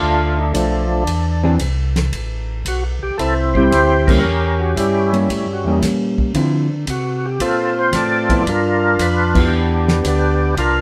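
Soul jazz organ trio at 114 BPM with a swung 4/4 feel, bluesy and soulful, moving through minor and dominant chords before settling on G6 in this short cut from a longer piece. A thick, lightly overdriven tonewheel organ with percussive third-harmonic attack, key click, chorus vibrato and slow rotary speaker carries the melody up front, while a round, mellow second organ voice, also on slow rotary, plays the bass beneath a dark, clean hollow-body electric guitar accompaniment. A soul drum kit with a fat snare, tight kick and dark, rolled-off cymbals sits back in a pumping room sound, and the band plays live together in moderate reverb, hitting shared accents at 4.0 and 9.3 seconds.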